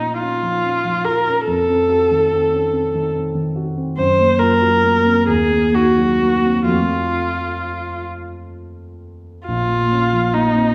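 A solo viola and a grand piano begin together in this yearning, melancholic romantic duo, with the bowed viola singing the melody in a rich, focused voice with vibrato and a smooth top, set above a dark, mellow piano accompaniment with deep bass. The music moves in 6/8 with free, rubato timing across a brooding minor-key harmony that turns toward a brighter major chord near 6.7 seconds before settling back by 9.5 seconds. Both instruments sit up front, though the recital hall's reverb makes the duo feel heard from further back in the room, in a short passage cut from a longer piece.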